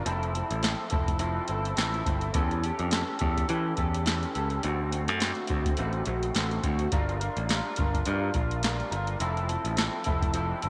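Indie and bedroom pop with a wistful, lonely air, this short cut from a longer piece moves at a moderate pace with a gentle sixteenth-note swing. An electric guitar played through a small old amp carries the accompaniment, its tone warm, slightly broken-up and lo-fi, fingered and compressed, and coloured by analog chorus and vibrato. A modern picked electric bass sits up front with a bright, direct sound, while a soft vintage rhythm box supplies a deep kick, crisp snare and metallic hi-hats. The harmony drifts from Fmaj7 through A7/E, D7 and Gm7 before returning to Fmaj7 at 9.2 seconds. A moderate echo-chamber reverb with a 2.2-second tail wraps the close, intimate mix in a hazy, faraway space.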